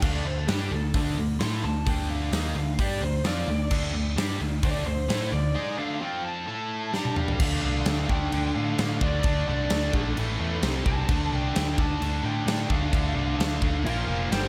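Set in a moderate, large studio reverb, this heavy, aggressive hard rock clip from a longer piece puts an up-front acoustic drum kit with a tight kick and medium-tuned snare alongside a round, punchy picked bass and a pair of bright, double-tracked riffing guitars, one overdriven and the other distorted in the background. A dark, lo-fi lead guitar through a small cranked amp, with overdrive and tape echo, solos from the start until a drum fill at 6.9 seconds. A fuzzy octave-fuzz lead line slips in behind at 13.9 seconds.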